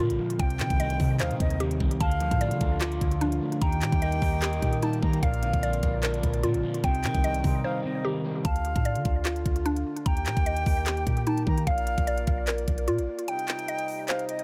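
Hip hop trap excerpt at 149 BPM in a half-time feel, hard-hitting and menacing in D phrygian, built on a knocking, crisp trap kit of kick, hi-hat and handclaps, a deep, boomy 808-style bass, a woody, warbling FM mallet pluck with chorus and delay, a twangy, slightly broken-up electric guitar that stops at 8.4 seconds after a brief break, an airy, reedy flute line with vibrato and delay, and a distant, roomy brass ensemble holding chords from 2.0 seconds over a Cm–Dm–Eb–Bb cycle, all in a dry mix where the kick drops out at 13.3 seconds.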